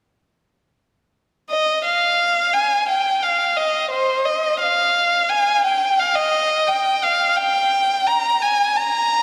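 Set in a straight 4/4 rock feel, this brooding, cathartic fragment of a longer piece brings in a single bowed violin at 1.5 s, up front and expressive, its warm, smooth-topped melody sung with vibrato and portamento between C5 and Bb5 and trailed by slapback echo and digital delay, the whole sound opening into a lush hall reverb with a big arena feel.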